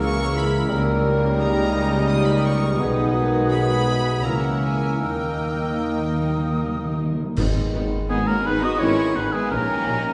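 A warm violin section carries the elegiac melody in this slow, rubato romantic movement for symphony orchestra in 3/4 and G# minor, played sul tasto with vibrato and a soft, intimate attack at roughly 76-89 BPM. Around it a silvery, pure concert flute, a mellow clarinet, a lightly vibrant oboe and a second, background violin section weave secondary lines, while a punchy bassoon and a very quiet viola section supply accompaniment, the bassoon falling away at 7.0 seconds. Dark, distant French horns and smooth-topped trombones hold soft sustained chords, a ringing fingerpicked harp spreads arpeggios beneath, and a dusky cello section joins a mellow tuba and floating double basses on the bass. Calf-headed timpani played with medium mallets enter at 5.0 seconds with a fill, and at 7.4 seconds bright clash cymbals and concert bass drum mark a full-ensemble accent as the harmony resolves onto G# minor. 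The orchestra sounds set back in a reverberant scoring stage with a softened top end, giving this melancholic fragment of a longer piece a hazy, mournful glow.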